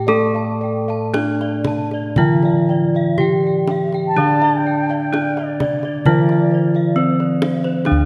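Ceremonial and shimmering, this Javanese gamelan passage in D slendro moves at a stately 56-68 BPM in 4/4, with a bright bronze metallophone melody up front over round, beating bossed gongs in the bass, a dark, smooth metallophone accompaniment whose paired tuning creates pulsing beats, ringing horn-mallet metallophone arpeggios and background gong arpeggios, a tight kendang, and a distant, mellow bamboo bansuri with expressive vibrato entering at 4.1 seconds as a second line, all bathed in a concert-hall reverb.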